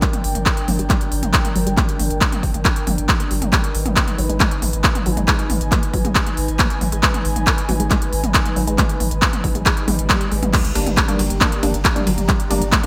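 Bright, 1980s-style digital production with light reverb frames this driving, hypnotic peak-time techno cut at 137 BPM, moving from G minor to A-flat minor. A punchy layered kick and an up-front kit of smooth hats, ride, crash, handclaps and toms with gated reverb pump against a deep, thick saturated sub bass. Behind them a squelchy, resonant blip pluck riff with phaser and delay rides a filter sweep beside an airy, breathy chorused pad, until a very quiet swell and sub drop at 9.8 seconds leads into the drop at 10.5 seconds, and a crisp, dark wavetable chord stab joins shortly after at 10.8 seconds.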